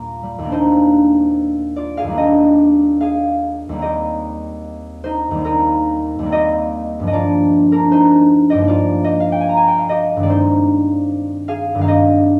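A ringing, fingerpicked concert harp sits up front in a dreamy, serene classical solo, drifting with rubato through lush major-seventh and ninth chords, its warm tone wrapped in a wet recital hall reverb within a dark, warm production across this 12.4-second fragment cut from a longer piece.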